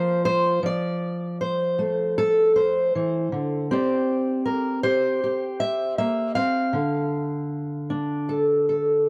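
Played rubato around 78 BPM in 4/4, this short folk excerpt in C mixolydian carries a pastoral, hopeful mood, with a lone fingerpicked steel-string acoustic guitar ranging from D3 to F5 across its 9.1 seconds. The guitar's full-bodied, auditorium-sized tone sits up front in a dry, close 1970s-style studio sound. It drifts through Bbsus2, F6 and Csus2 before settling on Dm at 6.7 seconds.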